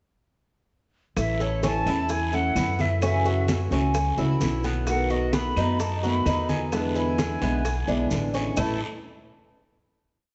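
A straight 4/4 groove at 130 BPM sets this short, sunny Cuban son and guajira piece in A major in motion, with nearly everything arriving at 1.2 seconds and the Cuban tres joining at 1.4 seconds. The percussion stays quiet: tight, high-tuned bongos play steady eighths with a hand bell, bright low-tuned congas add slaps and open strokes, woody claves tap a two-bar time line, a raspy guiro scrapes along, and grainy maracas sit in the background. Up front, a dark, thumpy pizzicato upright bass on gut strings plays a tumbao that anticipates the chords, while a fingerpicked steel-string acoustic guitar strums with muted slaps and a hint of finger squeak. The tres spins a metallic, double-strung arpeggiated guajeo, and an airy silver concert flute carries hook phrases with vibrato and a slightly unsteady, tongued delivery. The verse moves through A, F#m7, B7 and E7 before settling on a final A5 chord at 8.6 seconds, all bathed in a lush large-studio reverb with a softened top end.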